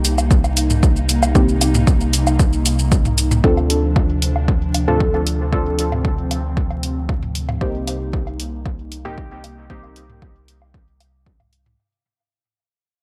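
Nocturnal and cavernous, this dub techno cut, taken from a longer piece, moves at 115 BPM in a straight 4/4, tuned slightly low to A4 = 438 Hz. A punchy, layered electronic kick sits up front, with a tape-warm analog hi-hat and shaker ticking above it, while an electronic woodblock and toms, entering at 0.2 seconds, ride a sidechain pump and trail off into dub echo. Beneath them, a round, soft sub bass built from triangle and square waves holds low sustained notes between C2 and D2, pumping with the kick. An airy, breathy pad of detuned sawtooth with a noise layer and a moving notch sustains dark chords through chorus, and a filter sweep moves across it from 3.4 seconds as the recording fades out. From 1.4 to 10.0 seconds a deep, nasal chord stab with a sub octave flickers through chorus, phaser and dub echo over a harmony that shifts from Cm7 to Dm7 and back. Vinyl crackle and light reverb frame the whole track in a dusty, dim space.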